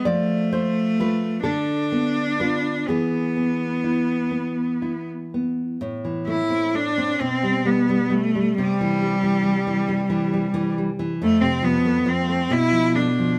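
Elegiac and solemn, this fragment of a romantic duo in A minor moves in a rubato 6/8 at roughly 40-47 BPM in dotted quarters, with a close, focused bowed cello singing the melody with vibrato over full-bodied fingerpicked nylon-string guitar accompaniment, both up front and played live together in a stone room whose moderate reverb lingers around them, as the harmony passes from F and E toward Am, G/B and C before settling on Dm69/B near 12.5 seconds.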